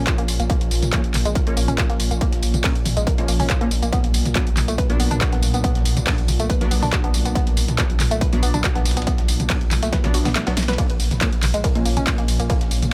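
This driving, hypnotic peak-time techno excerpt at 140 BPM opens with a woody, wave-folded pluck riff, aggressive detuned sawtooth rave stabs carrying gritty 12-bit sampler character and digital delay, a deep saturated sub bass, and a warbling vintage analog drone, each pumping against the kick as the harmony shifts between Bbm and Bm. Up front sits a layered, distorted electronic kick, joined by a punchy analog drum machine with handclaps, hi-hat, ride, snare, tambourine and toms, plus a very quiet, dusty sampler-style kit with a compressed, medium-tuned snare. A drum fill arrives at 9.9 seconds and the kick drops out briefly at 10.4 seconds, all within a dry, close-sounding mix.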